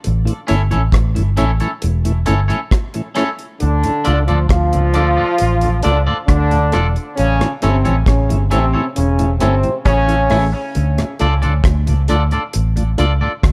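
Set in a small room, this laid-back, hypnotic roots reggae excerpt moves at 67 BPM in D harmonic minor, with a dry, dark drum kit of kick, hi-hat and rim click and a round, punchy, foam-muted fingered bass sitting up front over chords alternating between A and Dm. A mellow tonewheel organ with key click and slow rotary speaker lingers in the background, while a clean, twangy, scooped electric guitar adds tape-echoed accompaniment. From 3.6 to 10.5 seconds a clear trombone section with light vibrato steps forward to carry a second line, its tape echo trailing behind.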